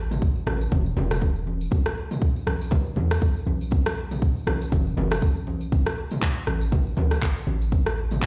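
Afro house at 120 BPM in B minor, this short excerpt from a longer piece has an earthy, swung groove with a sixteenth-note lilt. A deep, boomy 808-style bass with a sine core, a noise layer, a fast attack and a decaying sound sits under everything from the first instant, its sidechain pumping giving the low end a breathing motion. Just after it, a layered deep house drum kit of handclaps, rim clicks and toms arrives overdriven and up front, alongside a jingly, bright tambourine heard close and dry, while a tape-warm electronic kick drum lands up front from 0.2 seconds. Low-tuned, ringing congas played with soft hands come in at 0.5 seconds, sounding compressed and saturated, and they stop at 7.8 seconds as the rest carries on to the end. The mix has a light digital ambience and a large studio reverb, as if played on a big sound system in a bare room.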